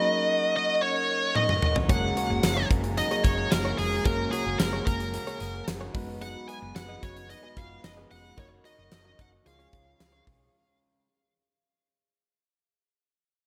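Straight 4/4 at 111 BPM drives this uplifting, romantic 1980s-style pop passage in F# major, with a huge arena drum kit kicking in at 1.4 s through a short fill: punchy kick, fat snare, hi-hat, tambourine and toms all drenched in gated reverb, joined at 1.9 s by a round, dark hollow-body fingered bass. Up front, a distorted high-gain lead guitar sings the melody from the opening over a glassy, warbling FM electric piano with chorus, ethereal glass harmonica chords and a dry, close-miked marimba second line. Behind these sit a clean, compressed direct-recorded guitar riff, a very quiet crunchy overdriven guitar and mellow analog synth brass stabs, all set in bright digital production with plate reverb as the whole passage fades out.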